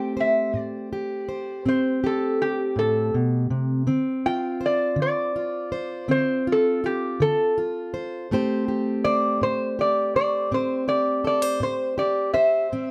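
Acoustic country blues in a slow 12/8 at 54 BPM in A minor, soulful and smoky, this short cut from a longer piece pairs a metal-body resonator slide guitar carrying the melody with a fingerpicked plugged-in steel-string acoustic guitar in accompaniment, both playing throughout and sitting up front in light reverb. The resonator, played with fingerpicks and slide, sounds mellow yet metallic and nasal, while the jumbo acoustic beneath it is full-bodied and warm, with audible finger squeak. The harmony moves from Am7 to Dm7 at 3.9 seconds and back to Am7 at 8.3 seconds.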